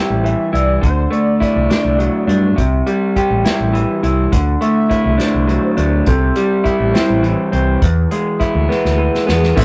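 Restless and bittersweet, this indie rock passage sways in 6/8 at 69 BPM (dotted quarters), moving between C and Dadd9 before landing on E. An up-front, slightly broken-up electric guitar through a small old amp carries the riff beside a growling, overdriven fingered bass, while a hollow, nasal square-wave lead melody with chorus, vibrato and slapback echo sits dark in the background. An unplugged drum kit played with bundle sticks, with a punchy kick and an airy small-room tone, enters at 0.3 seconds and closes with a fill from 8.7 seconds, captured as a rough rehearsal-room recording with tube saturation and light reverb.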